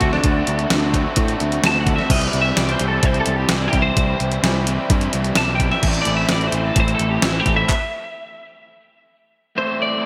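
Indie rock at 129 BPM in A dorian, this bittersweet, restless excerpt is cut from a longer piece and moves through D7, Cmaj7 and Amadd9 under a bright 1980s-style digital sheen. A twangy, compressed clean electric guitar carries the melody as a solo from the start, coated in ensemble chorus. Behind it, two overdriven guitars sit in the background playing riffs, one crunchy with subtle chorus and the other raw and garage-toned with lush chorus, while a picked electric bass holds the low end. A crisp 8-bit drum machine sits up front with a thumpy kick, fat snare, hi-hat, handclaps and crash cymbal, all wrapped in gated reverb. A very quiet, reedy tonewheel organ with key click and slow rotary speaker sustains chords high above. The bass, drums and crunchy guitar stop around 7.7 seconds, leaving the solo guitar, garage guitar and organ to ring out in a lush hall reverb until 10.1 seconds.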